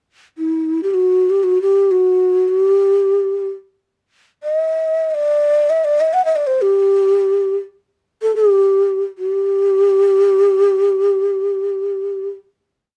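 A lone low ney opens at 0.4 s, its breathy, hollow reed-cane tone sitting up front with a crisp attack and vibrato as it spins an ornamented modal melody in Persian style. The unmetered phrasing feels soulful and hypnotic, colored by light reverb and a dark, warm production. At 9.2 s the line settles onto a final note, and the ney ends at 12.3 s.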